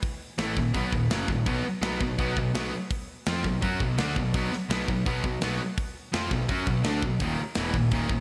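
A straight 4/4 pulse at 167 BPM opens this dark, relentless heavy metal excerpt, with a tight, mid-forward drum kit of hi-hat, tight kick and medium-tuned snare in gated reverb sounding alone before the rest of the band enters at 0.4 seconds. Two distorted electric guitar riffs come in, a high-gain, bright one up front and a compressed one in the background, over a growly, fuzz-overdriven picked bass, moving from Ebm to B5 and arriving on Eb5 at 7.2 seconds. The bright 1980s-style digital production places the band in a moderate, lush hall reverb blended with a small room.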